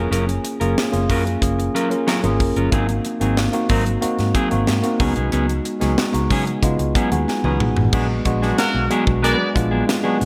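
A straight 4/4 groove drives this glossy, upbeat 1980s jazz-funk pop excerpt: a crisp fusion drum kit with a high-tuned snare, tight kick and gated reverb sits up front beside a tine electric piano bathed in lush chorus, a round, foam-muted fingered bass and a dark, mellow electric guitar riff with subtle chorus, and after piano and drum fills a tight horn section with light vibrato enters at 8.4 s, the whole set in a bright digital production with moderate hall reverb.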